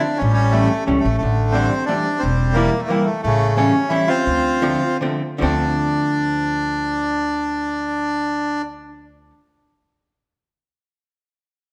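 A reedy, airy bandoneon carries the melody up front in this whirling, nostalgic musette waltz fragment in D minor, moving at 146-179 BPM in 3/4 over a dark, clean, picked hollow-body electric archtop guitar and a woody, thumpy pizzicato gut-string upright bass, set in a wet recital hall reverb, with the pace slowing from 3.2 to 5.4 seconds before a new section begins.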